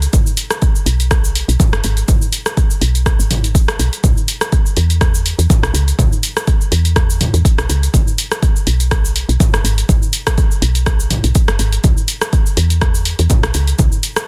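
A deep, layered electronic kick drum sits up front from the first beat, its tape-saturated tone re-recorded in a small room and giving this afro house excerpt its steady 123 BPM pulse in 4/4. Beneath it, a woody FM bass with a soft, round, mellow voice and a fast, decaying attack moves between F#1 and E2 in C# minor pentatonic, pumping against the kick through sidechain compression. A deep house drum kit, equally close and produced, fills in with cabasa, hi-hat, rim click and toms, while its snare carries a touch of soft clipping, and a 55% swing on the sixteenths gives the groove a gentle lilt. The mood is spiritual and warm, held in a single continuous section cut from a longer piece, with the kit running until 14.3 seconds and the kick and bass stopping just before at 13.9 seconds. The sound is dry and intimate, with little reverb, and the master is dense and heavily limited in a modern way.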